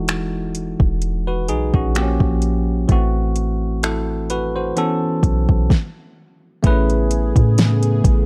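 A gently swung, unhurried groove from an electronic R&B kit sets the pace, with finger snaps, metallic hi-hats, a fat snare and a soft kick, all overdriven and up front, over a deep, round 808-style bass. A bright, bell-like tine electric piano carries smooth, tender chords moving from Emaj9 through minor sixth colours to B9sus4 before a brief stop at 5.7 s. At 6.6 s a mellow, detuned sawtooth pad with chorus slowly blooms under an Amaj9 chord, closing this short cut from a longer piece in a dark, dry production.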